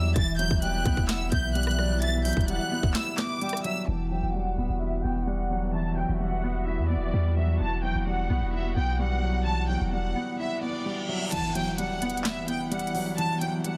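A dense, heavily limited modern mix set in a small room opens this eerie, menacing half-time trap fragment, cut from a longer piece. A lush violin section carries the melody with expressive vibrato, while a felt-muted upright piano, soft and intimate with audible action noise, supplies accompaniment, and a dark, woody string section holds sustained chords in the background, all three softened by a low-pass filter. Underneath, a deep, sine-like 808-style bass sits up front with long, decaying notes until 10.1 s, and an electronic trap kit with a hard-clipped kick, sharp snare, crisp hats, handclaps, rim clicks and crash drives the opening before breaking off at 3.8 s. A reedy, airy concert flute traces a delayed second line in the background during those first seconds, and a filter sweep then colours the long middle stretch. At 11.3 s an electronic reverse cymbal gives way to an impact as the drums return with the kick muted, the piece having opened on an Emadd9 chord.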